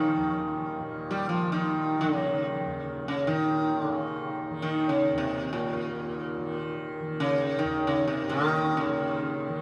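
Devotional and radiant, this brief Hindustani classical excerpt unfolds in free time, with a mellow, round sitar carrying the melody up front from Bb2 to G3, its plucked, buzzing tone haloed by shimmering sympathetic strings. Beneath it, a softly plucked tanpura holds a warm, buzzing drone spanning Eb2 to Eb3, sitting well back in the mix. Both sound within a cavernous cathedral-like reverb lasting 6.9 seconds, the notes hanging in the air of a church or concert hall.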